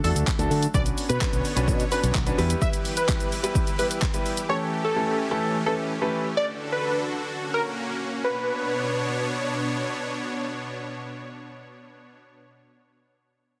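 A catchy, detuned sawtooth lead carries the melody with delay through the first 9.6 seconds of this confident, driving dance-pop excerpt in B minor at 128 BPM, which opens on a drop. It is joined by a polished, up-front grand piano, a direct envelope-filtered fingered bass that drops out at 2.5 seconds, and a layered deep house kit with a punchy kick, handclaps, hi-hat and shaker that stops at 4.5 seconds. A lush, bright supersaw pad with a slow attack holds sustained chords to the end, and it, the piano and the bass pump against the beat, all inside a heavily compressed radio sound with digital room reverb.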